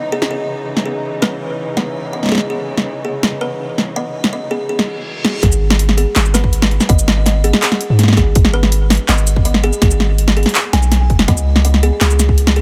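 This half-time drum and bass fragment, cut from a longer piece, opens on a veiled, con sordino string section holding dark sustained chords that pump under sidechain compression, while a woody, hollow-toned kalimba plays short thumbnail-plucked arpeggios trailed by dub echo. Almost at once an overdriven, layered drum kit joins with a cracking snare, bright hats, shaker and handclaps; it was re-recorded in a small room and sits up front. A reverse cymbal at 4.9 seconds leads into the drop at 5.4 seconds, where the strings stop and a deep, mellow 808-style bass takes over with long sine notes that strike fast and decay, alongside a hard-clipped electronic kick. The kalimba and kit carry on to the end of the excerpt as the harmony moves from C#madd9 to G#m and finally C#sus2. The mix has little reverb, and the mood is spacious yet heavy.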